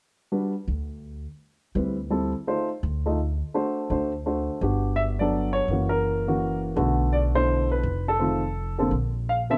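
This dark, warm production places two instruments up front in a light reverb. It is a swinging jazz waltz in 3/4, cut from a longer piece, with a warm, swinging mood. A mellow, natural-sounding grand piano carries the melody from 0.3 seconds, its notes fading quickly. An upright bass joins at 0.7 seconds, plucked pizzicato on steel strings, with a woody, growly, thumpy tone deep in its range. After an opening stretch free of chord changes, the second section begins at 4.6 seconds, moving through Gmaj7, F#7, Bm7 and F before the harmony falls away again near the close.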